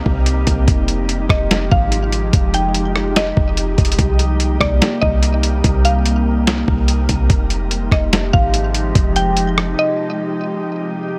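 A half-time groove at 145 BPM in 4/4 drives this melancholic, spacious stretch of atmospheric cloud-rap, cut from a longer piece, with a lo-fi sampler-style drum kit of thumpy kick, medium-tuned snare, rim click and hi-hat sitting up front, sounding compressed, pitched down, muffled and tape-warm. A clean 808-style bass, deep and boomy with a sine-like fast attack and mellow decay, joins the drums from 0.1 s and holds the low end before both drop out for a brief break near the close. Underneath, a glassy FM pad sustains chords moving between Cm7 and Fm9, its slow attack and long release softened by ensemble chorus and its own bright, ethereal reverb, while sidechain pumping ties it to the beat. A mallet-like synth pluck enters at 1.3 s with a woody, round, percussive melody in a narrow upper range, shaded by chorus, a low-pass filter and digital delay. Far in the background, an airy, breathy, wind-like noise layer drifts in a dark register with its own reverb, and the room itself stays dry, so pad and texture linger alone until 11.2 s.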